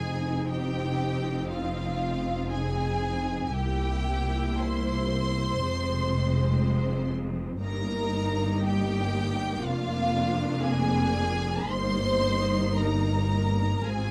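Close, detailed microphones and light reverb give this slow romantic movement for string orchestra an intimate, clear sound. It is cut from a longer piece in Eb major, and it moves in a rubato 4/4 at about 52-63 BPM with a tender, lyrical mood. All five sections bow together throughout the 14.1 seconds. Two violin sections lead: the upper one sings the melody high in its range with a lush, focused vibrato tone and a smooth top, while the lower one carries a second line beneath it. The violas fill in the accompaniment with soft attacks and expressive portamento, the cellos sit in the background with a rich bass, and the double basses add a close, bowed foundation from below. The harmony opens on Fm7 and passes through C7, Fm, Eb/G and Bb7/F before coming to rest on Eb/G.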